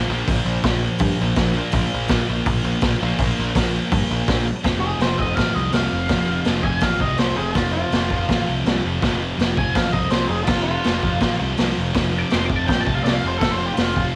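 A straight, driving 4/4 beat at 164 BPM kicks off this rowdy, swaggering garage rock cut, with a raw drum kit coming in at 0.3 seconds: a boomy kick, a medium-tuned snare, hi-hat and crash cymbal, all saturated and gritty with a rolled-off top and sitting up front in a small room. A thick, double-tracked fuzz guitar lays down the riff from the first moment, bright and distorted, while a picked fuzz bass with an overdriven, amped tone holds down the low end. The opening passage rests on a Bb5 power chord before the music moves to F5 at 4.6 seconds, where a lead guitar solo begins. That octave-fuzz lead, dark and distorted, enters at 4.8 seconds and rides high above the riff through the end of this excerpt, which is cut from a longer piece. Light reverb, cassette-tape grit and vinyl crackle give the whole thing a rough, homemade feel.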